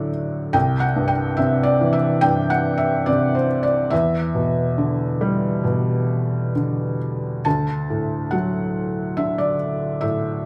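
A felt-muted upright piano opens the recording alone, its soft tone close and intimate, with the thin felt and audible action noise sitting up front in the sound. This is lyrical classical solo piano in 4/4, played with a rubato feel that gives the melancholic, wistful mood room to breathe. The harmony moves from D to C and then settles on Em7, with the piano ranging from C2 up to A5. At 7.5 s a new section begins on a Dadd9 chord and carries the music to the close at 10.5 s. A moderate recital hall reverb surrounds the mellow instrument, and the passage is cut from a longer piece.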